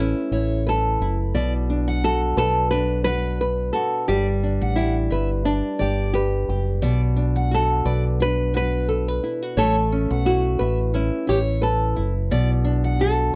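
A dry, close 1970s-style studio sound frames this wistful, tender acoustic pop excerpt in B minor at 88 BPM with a light sixteenth-note swing, where an up-front, boxy nylon-string guitar carries the fingerpicked melody over a second classical nylon-string accompaniment with audible finger squeak, a dark, round, fingered electric bass sits deep and direct beneath, and a full-bodied jumbo steel-string acoustic adds quiet picked arpeggios from 0.3 seconds as the chords move through Aadd9, Bm and G.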